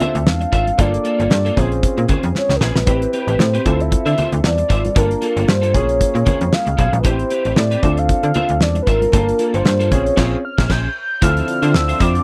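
This dry, close studio sound puts a damped drum kit, with its fat snare and tight kick, up front beside a snappy, metallic, slap-like FM bass in a funky, danceable early-eighties boogie funk groove at 115 BPM, cycling through minor ninth chords. A mellow, round, horn-like synth lead with vibrato and chorus carries the melody over a grand piano, a compressed, slightly broken-up picked electric guitar riff, and very quiet, ringing congas. The congas drop out at 10.1 seconds, a band accent hits at 10.2 seconds, and a brassy, bold sawtooth pad sits in the background from 11.2 seconds.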